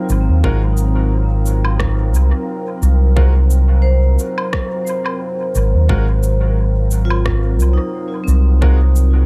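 A deep, moody pad of detuned sawtooth unison with a sub octave sustains an Ab13 chord under ringing vibraphone arpeggios, whose echoes trail off into this hazy, peaceful ambient dub fragment at 88 BPM in Ab mixolydian with a light 16th-note swing. A round, amped fingered electric bass sits up front from 0.1 s, joined by an overdriven electronic shaker, woodblock and rim click, then at 0.4 s by a tight, overdriven electronic kick in the background and brilliant upright piano stabs with audible action noise. The mix is dry and echo-heavy, with dub echo repeating the vibraphone, percussion and piano.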